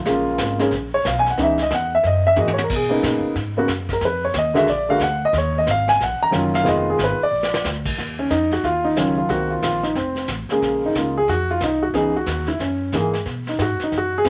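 A swung 4/4 groove underpins this smoky, cool jazz piano trio fragment, where an intimate, up-front grand piano, its action noise audible, carries a solo through the first 8 seconds over a woody, thumpy pizzicato upright bass on gut strings and a vintage brushed kit with dark cymbals, a punchy kick and a rolled-off top that drops in brief fills at 2.4 and 7.3 seconds, all set in a moderate studio reverb as minor-seventh, ninth and half-diminished harmonies drift by.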